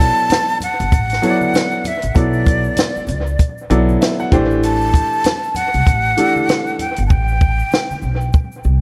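Mellow and smoky, this short jazz-hop passage cut from a longer piece sits at 97 BPM in 4/4 with a 16th-note swing, moving from Bm7 to Am7 at 4.3 seconds in a B phrygian colour. A breathy metal flute carries the melody with vibrato, a soft attack and lifted highs, its expressive lines trailed by analog delay until 8.3 seconds. An upright piano with woody, smooth, vintage character and short sustain accompanies up front, adding a fill from 3.4 to 4.6 seconds before stopping at 6.8 seconds. Beneath it, a pizzicato upright bass on gut strings gives a dark, thumpy low end, while a compact cocktail drum kit offers a punchy kick, a high-tuned snare and hi-hats roughened by vintage 12-bit sampler grit and analog delay, the hi-hats muted from 7.1 seconds onward. Tube shaker and congas played with soft hands add a bright touch in the background, all set in light reverb and small room ambience within an echo-heavy mix.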